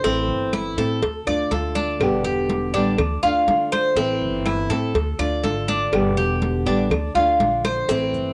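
A sultry Cuban son and guajira fragment opens with fingerpicked nylon-string guitar and metallic, double-strung tres arpeggios up front, both tinted by cassette tape, over thumpy gut-string upright bass, tight high-tuned cowbell and bongos, and damped congas in the background, with woody claves joining at 0.5 s, a drum fill at 7.6 s and grainy maracas slipping in at 7.9 s, all circling Am, Dm and G in a lightly reverberant home recording.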